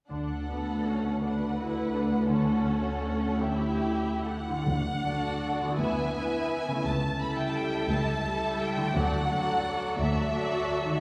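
A serene, tender classical passage in D major opens with every part except the timpani entering together: a lush violin section with a rich tone carries the melody while a darker violin section sings a second line beneath it, a viola section holds a smooth, even accompaniment, and warm cello and double bass sections anchor the bass, every bowed section played with vibrato. A mellow concert harp adds ringing arpeggios in the background, and at 4.7 s close, dry timpani struck with hard mallets join briefly as the harmony moves from D through A7/D, E7/D and A7/C# before settling back on D at 9.0 s. The slow, rubato 6/8 pulse of about 44-59 BPM unfolds in a church-like space with a long, wet reverb.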